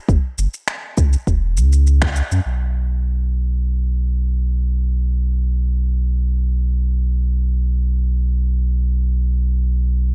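Smooth and wistful, this short sunset chillout fragment drifts in free time, tuned slightly sharp at A4 = 441 Hz. A deep, tape-toned electronic kick and a layered, produced bed of electronic shaker and finger snaps sit alongside a round, sine-like sub bass ranging from E1 to F#2, with a band accent landing at 2.0 seconds before the kick stops at 2.1 seconds and the percussion at 2.4 seconds. From there the mellow, sustained sub bass carries on alone until 10.1 seconds, up front in a dry, dark and warm production.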